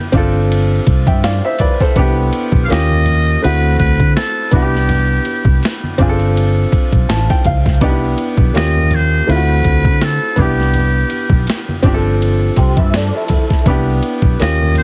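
A buzzy, growling trumpet with a metal mute and tape echo carries the melody from 2.6 seconds in this sensual neo-soul R&B excerpt at 82 BPM in C major, set over a woody upright piano, a round, foam-muted fingered bass, a gritty boom bap sampler-style kit with a thumpy kick, very quiet low-tuned congas, a slightly broken-up electric guitar line with ensemble chorus between 12.6 and 13.7 seconds, a piano fill at 6.7 seconds, and a heavily compressed radio-like sound in a small room.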